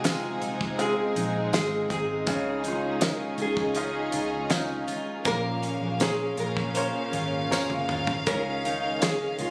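Heartfelt and emotional, this slow pop ballad fragment sets a small, fingerpicked nylon-string guitar melody with digital delay over brilliant short-sustain grand piano, dark, softly bowed chamber strings up front, jumbo picked steel-string arpeggios in the background, a round, foam-muted vintage bass, a damped 70s kit with fat snare and tight kick that plays a fill at 7.5 seconds, and jingly tambourine, all in light reverb and captured on a phone in the room.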